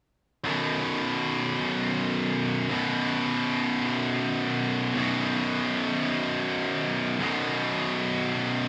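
Dark and epic, this metal fragment cut from a longer piece moves in a straight 4/4 with two distorted electric guitars driving a low riff on a B5 chord. The tight, up-front guitar enters at 0.4 seconds and is joined a moment later by a scooped, high-gain partner, both picked and bright, sharing the same low register through 8.7 seconds. Light reverb and a digital studio ambience frame the rough home-demo mix.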